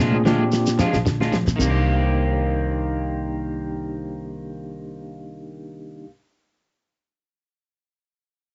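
A dull, lo-fi home cassette recording with light reverb and a muffled top end opens this defiant, hypnotic afrobeat clip from a longer piece, set in C minor at 112 BPM with a gentle sixteenth-note swing. A dry, damped 70s drum kit with a fat snare plays a fill over a Bb7 chord, joined by high-tuned congas struck with hard hands in the background, a grainy shekere and a twangy, phased guitar playing arpeggios, and all four stop at 1.7 seconds. The harmony then moves to Cm7, leaving a woody, thumpy pizzicato upright bass up front, a picked guitar with subtle chorus playing slightly broken-up stabs, and a barky, gritty tine electric piano with fast tremolo through a combo amp.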